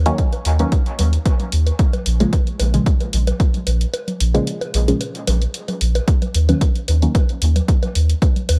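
A digital ambience surrounds this short cut from a longer dub techno piece, a deep, meditative groove in straight 4/4. Up front, a soft, round sub bass built from triangle and square waves pumps against the sidechain, sustaining low beneath a punchy, layered electronic kick that was re-recorded in a small room. Filtered dub chord stabs, detuned sawtooth tones that stay muted and mellow, move from Ebm7 to Bbm7 and back, evolving through a filter sweep, chorus, phaser and dub echo with fast attacks and short decays. An overdriven analog hi-hat and electronic bongos and congas were re-recorded in a large room, the hand percussion pumping and echoing in dub fashion. The kick drops out between 3.9 and 6.1 seconds, returning as the chords come back to Ebm7, while the stabs fall away at 7.1 seconds.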